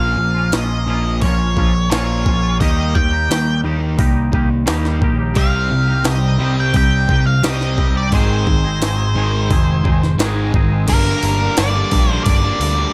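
Gritty, pitched-up sampler-style jungle drums with a thumpy kick sit up front in this cathartic, angsty quiet-loud alternative rock piece at 87 BPM in G minor, alongside a growly overdriven picked bass, a bright fuzz guitar riff joined at 5.4 seconds by a thick fuzz guitar riff in the background, a twangy clean electric guitar playing arpeggios through analog chorus until 10.9 seconds, and a dark octave-fuzz lead melody with slapback echo, set in a digital ambience as the chords move from Bbm through Eb, Cm and Ab to land on Gm.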